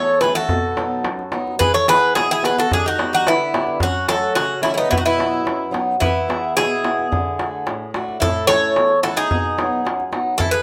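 Two bouzoukis and a fingerpicked acoustic guitar open this excerpt of Greek folk music at once, with a darbuka joining at 0.2 seconds. The mood is hopeful and sunny, at 109 BPM in a straight 2/4 in E major. The lead bouzouki sits up front with a bright, metallic double-string tone and some octave-doubled strings, carrying the melody. A second bouzouki plays a lower supporting line, softer and warmer in colour. The guitar gives a boxy, swing-style fingerpicked accompaniment, and the clay-shell darbuka adds a deep, compressed and saturated pulse. The chords move from B through E, G, F#m and back to B, then repeat the section over E, D, A and B, all in a light reverb before the cut at 10.6 seconds.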